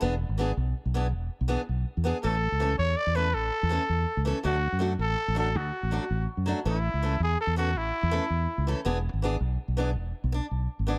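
A small room's light reverb frames this short, carefree highlife guitar band passage, cut from a longer piece and moving at 109 beats per minute in a straight 12/8 in A major. A picked acoustic archtop guitar carries the accompaniment throughout, its fresh strings sounding bright and boxy, with an occasional finger squeak. Beneath it, a fingered electric bass sits up front with a round, punchy, amped tone that stays dark and direct. At 2.2 seconds a growling trumpet takes the solo melody, raspy and gritty with a light vibrato and a pop-style edge, until it drops out at 8.7 seconds. The sunny harmony cycles from E7 through A and D and back to A before returning to E7 at the close.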